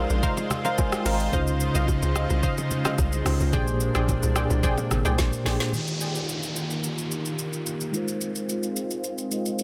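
A dense, heavily limited mix with light reverb carries this soulful amapiano excerpt in Eb major at 109 BPM, where a mellow, clean tine electric piano opens with a fill and a lush, detuned unison pad pumps beneath chords such as Dbmaj9 and Bb13. Up front, a hollow, bouncy log drum bass and a smooth R&B kit with a woody, softly clipped snare, metallic hats and rim click anchor punchy, warbling chord stabs with tape echo, while very quiet bongos and congas add close, hard-handed color. During a drum fill, the bass, stabs and hand percussion have dropped out by 5.6 seconds, and a downlifter and filter sweep carry the piano, pad and drums to 9.6 seconds.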